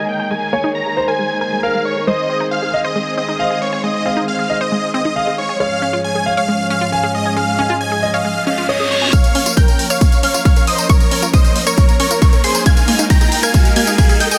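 This uplifting trance excerpt in Bb minor moves at 136 BPM in a straight 4/4, with an emotional, bittersweet mood. A huge, euphoric supersaw lead carries the melody up front, its detuned sawtooth tone bright and airy, shaped by sidechain pumping, a low-pass filter and tape echo. Beneath it, an intimate grand piano plays a second line with its action noise audible, dark bowed strings hold woody sustained chords, and a lush, warbling unison pluck ticks out pumping, delayed arpeggios in the background while a filter sweep moves across the synth arpeggio sound. A reverse cymbal rises from 8.5 seconds. At 9.1 seconds the piano drops out and the build-up begins: a riser, a higher pluck line, tape-warm hi-hat and tambourine, and a punchy kick set up front all enter. A drum fill arrives at 12.7 seconds, and the chords move from Ebsus4 through Ab and Db/Ab to Bbm before returning to Ebsus4, all in a light reverb.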